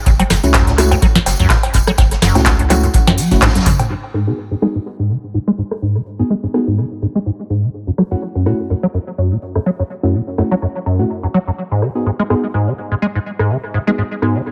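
A squelchy, resonant acid bass riff opens this gritty, raw 125 BPM acid house cut in G# phrygian over a deep analog kick, a booming drum machine with metallic hats, tonal snare, claps, cowbell and toms, a thick saturated sub bass, a soft background brush kit and a bright, jingly tambourine, with dark, mellow chord stabs on F#m7 and G#m7 entering at 0.4 s. After a drum fill the sub bass, kick, brushes and tambourine drop out near 3.8 s, while the tape-echoed acid line rides a filter sweep from 3.9 s alongside the drum machine and chord stabs in an echo-heavy mix.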